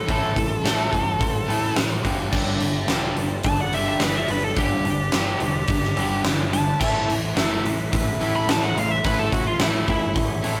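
A punchy, up-front arena drum kit drives this menacing hard rock excerpt at 107 BPM in straight 4/4, with a fat snare, bright cymbals and a hall-like acoustic sound. Over it, a high-gain lead guitar plays a distorted, warm solo from the opening moment to 10.2 seconds, ranging from E4 to B5. Beneath the solo, an overdriven semi-hollow guitar with a hollow-body bite and a tight, picked distorted guitar share a low riff in the background, while a growling, overdriven picked bass anchors the bottom. At 2.3 seconds a gritty, thick tonewheel organ joins with sustained chords, colored by chorus vibrato and a slow rotary speaker. The harmony moves from A5 to G and back to A, and the whole take has the rough feel of a rehearsal room with moderate studio reverb.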